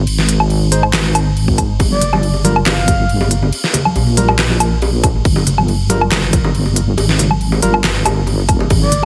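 Brooding and heavy, this deep dubstep excerpt moves at 139 BPM in a half-time 4/4 feel in G phrygian, anchored by a dark, chorused wobble bass that sits up front from the start while a dubstep kit with crisp hats, deep snare, handclaps, woodblock and crash shapes the groove. A punchy, tape-warm electronic kick arrives at 1.5 seconds, then soft-handed bongos and congas with dub echo enter as the harmony settles on G minor, and a breathy, flute-like synth lead with vibrato and chorus sounds briefly from 1.9 seconds and returns at the very end. Bright, barky tine electric piano stabs echo in the background, all within a heavily compressed, radio-like sound with light digital reverb.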